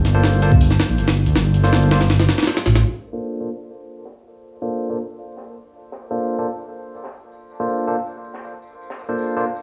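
This atmospheric, frenetic drum and bass and jungle piece moves at 161 BPM over Gm11. It opens with a deep, rumbling detuned saw bass and a compressed, pitched-up sampler-style jungle kit with a thumpy kick, both up front until 2.8 s. A bright, barky tine electric piano plays stabs through a low-pass filter and dub echo until 9.4 s, while at 2.8 s the harmony shifts to Bbmaj9 and a faint, saturated tambourine and high-tuned snare with a rolled-off top take over under a filter sweep, all set in a light small-room ambience.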